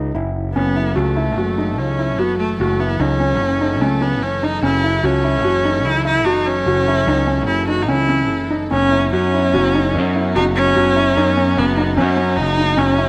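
A growly, overdriven picked electric bass stands up front in this restless, hypnotic slice of contemporary chamber music in 5/4, joined by a clear, focused solo viola with vibrato carrying a second line from 0.5 seconds, a soft felt-muted upright piano spinning intimate arpeggios, and an earthy chamber string section holding sustained chords in the background from 0.6 seconds, all in a close, detailed room with light reverb as the harmony moves from F#m7 to Badd9/F# at 8.7 seconds.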